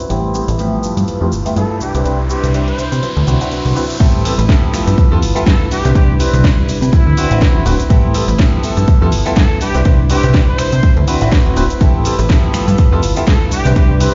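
A groovy, nostalgic filtered disco house cut at 123 BPM in A minor opens with a gritty, sidechain-pumped clean guitar riff, overdriven house drums with cracking snare and bright hats, a phased grand piano and a plucky, funky analog bass cycling through Am9, G13, Cmaj9 and D13 under a filter sweep and electronic riser, before a smooth-topped horn section melody with dub echo arrives at 1.6 seconds and a punchy, overdriven kick lands on the drop at 4.0 seconds, with a very quiet tube shaker slipping in at 11.8 seconds, all heard through a dark, stone-room sound.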